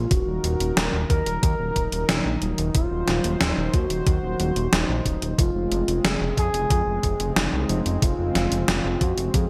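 Synthwave at 91 BPM in a straight 4/4, this driving, cinematic excerpt is cut from a longer piece and set in a bright 1980s-style digital production with light reverb and digital ambience. A smooth, expressive sawtooth-and-triangle lead carries the melody between Eb4 and Bb4, its dark tone colored by chorus, delay and vibrato. Beneath it, a mellow, detuned analog pad holds sustained chords in the background with chorus and sidechain pumping, while a fat, thick sawtooth bass sits up front, pumping as well and moving through a filter sweep. From 0.1 seconds, an overdriven, thumpy electronic kick and a gated 80s digital drum machine join in, the drum machine pushing its hi-hat and gated-reverb snare forward in the mix. The harmony rests on Ebm and then shifts to Dbmaj7/F at 5.4 seconds.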